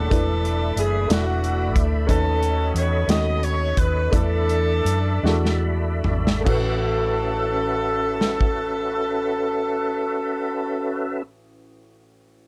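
Slow gospel in 6/8 and A major, soulful and hopeful, moving at roughly 46-61 BPM in dotted quarters with a straight feel. A jazz-style saxophone section carries the melody up front, its ensemble tone warm with a light vibrato. An upright piano with a woody, slightly detuned vintage character plays accompaniment, while a tonewheel organ holds sustained chords through a slow rotary speaker, light overdrive and chorus vibrato, its key click audible. A round, dark hollow-body electric bass and a tight, smooth acoustic drum kit in a small room sit prominently, the kit using crash, hi-hat, kick, snare and toms. The tempo slows from 2.1 to 6.5 seconds, with a drum fill closing that stretch before the harmony settles on A69, and the drums stop at 8.6 seconds. Light reverb and a dark production frame this fragment of a longer piece, which ends with the piano sounding alone until 12.5 seconds.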